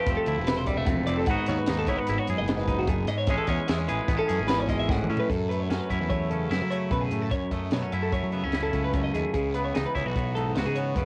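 A home cassette recording with light reverb gives this short excerpt a hazy, lo-fi softness, cut from a longer math rock and midwest emo piece that feels playful and wistful. It moves at 149 BPM in an odd 5/4 metre with a straight feel. The clean, up-front twangy electric guitar carries the accompaniment with a bright, picked tone, while a compressed twelve-string electric guitar spins arpeggios high above it. Underneath, a fuzz picked electric bass adds a warm, overdriven weight. A compact cocktail drum kit sounds dry and acoustic, with a high-tuned snare and a punchy kick, and a drum fill at 4.9 seconds leads into a new section at 5.3 seconds. The harmony drifts through Fmaj7, G#m7 and Amaj7, then settles on F#m7 before turning to C#m11 at 9.3 seconds.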